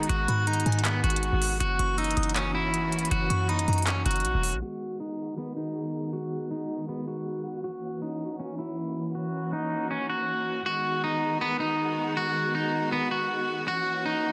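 A half-time trap groove opens this brooding, hard-hitting hip hop fragment, with crisp electronic hi-hats and handclaps over a punchy, tight 808-style bass that hits with a fast attack and then decays. A twangy, slightly broken-up electric guitar carries the melody up front, fingered and bathed in spring reverb and tape echo. Beneath it, a distant symphonic string section holds smooth, even bowed chords with light vibrato, while a delicate FM synth bell tinkles in the background, bright and coloured with chorus and tape echo. The drums drop away at 4.5 s and the bass at 4.6 s, leaving guitar and strings to drift through a filter sweep that runs until 10.7 s, as the harmony keeps moving between G#m7 and F#7. The dense, heavily limited master sits in light digital ambience.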